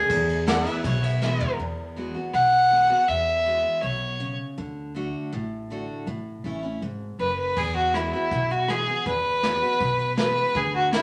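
Honky-tonk and classic country at a brisk 161 BPM in E mixolydian, this down-home, nostalgic excerpt from a longer piece opens with a brief nasal, metallic slide lap resonator phrase and twangy pedal steel chords over a bright, full-bodied picked dreadnought acoustic guitar and a woody, thumpy pizzicato upright bass. After a distant, roomy brush kit plays a fill at 1.2 seconds, an up-front fiddle with an airy bow and light vibrato takes the lead for a solo, while the kit drops out and then returns at 7.6 seconds. The chords move from E through Eadd9, D and A before settling back on Eadd9, all bathed in a wet studio reverb.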